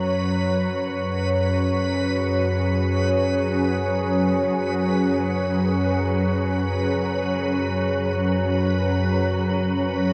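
A calm, organ-like drone with a warbling, vintage character sits up front in this dark, ominous ambient drone piece, heard in free time and tuned to A4 = 441 Hz, with ensemble chorus giving it a detuned unison thickness. Alongside it, a deep, moody pad built from sawtooth and sine tones with a sub octave holds sustained chords over an F#5 harmony, its slow attack and long release softened by chorus and shimmer reverb. A faint reversed, granular texture adds a bright, dreamy swelling tone on B4, and the whole fragment, cut from a longer piece and lasting 10.1 seconds, is drenched in a huge, wet reverb with a 7.4-second tail.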